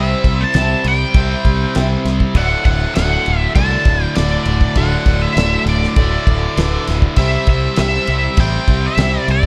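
Swaggering and driving, this classic rock excerpt moves at 100 BPM in a straight 4/4, centred on D mixolydian and cut from a longer piece. A dark, octave-fuzz lead guitar carries the melody between D5 and A5, coloured by wah, distortion and slapback echo. Beneath it, a bright, double-tracked overdriven electric guitar plays the riff with spring reverb, while a growling fingered electric bass, overdriven and up front, anchors the low end. The cloth-damped drum kit enters at 0.2 seconds with a fat snare, tight kick and dark crash cymbal, its top rolled off for a thuddy feel. Tucked in the background, a woody upright piano with audible action noise and a very quiet, boxy, picked ladder-braced acoustic guitar add accompaniment. The harmony moves from C to D at 2.4 seconds and back to C at 7.2 seconds, all set in a small room ambience.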